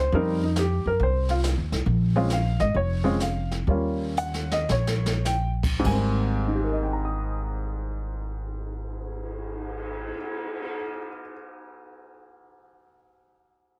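A swinging jazz piano trio excerpt in Ab major, moving between 96 and 138 BPM in 4/4 with a slowdown from 1.9 to 5.8 seconds, in which a clear, slightly detuned upright piano with short sustain carries the melody over woody pizzicato upright bass on steel strings, both up front, while a brushed drum kit with dark cymbals and a boomy kick plays a fill at 4.2 seconds, the whole trio sitting in light reverb with a heavily compressed, radio-like sound as the harmony settles on Abmaj9.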